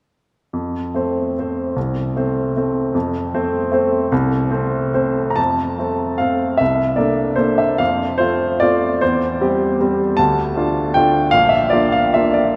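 Classical piano waltz in F major and 3/4, playful and graceful, moving with a rubato feel between 130 and 164 BPM in this short excerpt cut from a longer piece. A clear, polished baby grand plays solo from 0.5 to 12.6 seconds, spanning Bb1 to Bb5 and sitting present and up front, with a second section arriving at 5.4 seconds. Harmony moves from F to C13, back to F, then through C/E, Dm and Bb, and the piano rings in a vast cathedral space whose wet reverb lingers for 5.7 seconds.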